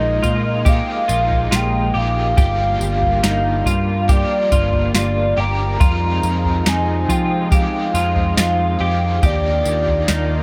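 A hollow, woody clarinet-like synth lead with vibrato sings a haunting, melancholic melody over a thick, detuned unison pad, twangy clean electric guitar arpeggios with chorus and delay, a bright overdriven electric guitar with tremolo sitting low in the mix, and a round, dark picked bass, while a vintage rhythm box with deep kick, crisp snare, tambourine and toms joins at 0.2 seconds in this slow 70 BPM dream pop passage in F dorian, moving from Bb7sus4 through Gm7 and Fm7 to Ebmaj7 under light reverb.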